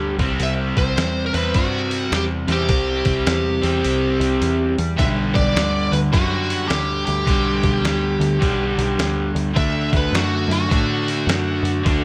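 Blues rock in a power-trio, southern rock vein, this short excerpt from a longer piece carries a smoky, heavy mood over a swung 4/4 groove. A biting, dark lead guitar with overdrive plays the melody up front, while a double-tracked overdriven rhythm guitar, also up front, drives the riff underneath. An overdriven picked electric bass, foam-muted, round and punchy, anchors the low end, and a lo-fi sampler-style drum kit enters at 0.2 seconds with a thumpy kick, medium-tuned snare and hi-hat, sounding compressed, pitched down and muffled with a tape-like warmth. The kick and snare drop out between 3.8 and 5.0 seconds before returning. The harmony moves from C to G/B and then to D, all set in a light reverb.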